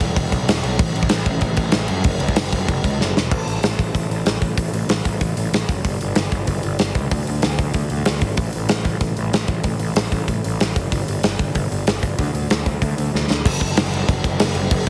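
Rowdy and energetic, this punk rock clip charges along at 190 BPM in a straight 4/4, cut from a longer piece. A fuzzed, overdriven picked electric bass sits up front in the low register against a big acoustic rock kit with a punchy kick, medium-tuned snare, hi-hat and bright crash cymbals, with drum fills at 3.0 and 13.1 seconds marking the shifts between sections. The sound is dry and heavily compressed, giving it a radio-ready punch.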